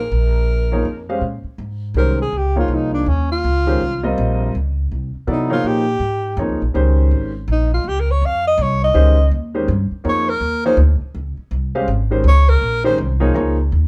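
Swung eighth notes in a lilting three-beat metre carry this hypnotic, spiritual jazz excerpt, played live by the band in one room with light reverb. A woody, plucked upright bass and the breathy alto saxophone sit up front from the start, a baby grand piano with open, long-sustaining chords enters at 0.7 s, and the saxophone moves into its solo at 1.2 s, intimate and whispered with subtone, soft attacks, scooped notes and vibrato. The harmony rests on a single minor seventh chord that opens into a minor eleventh as the solo begins.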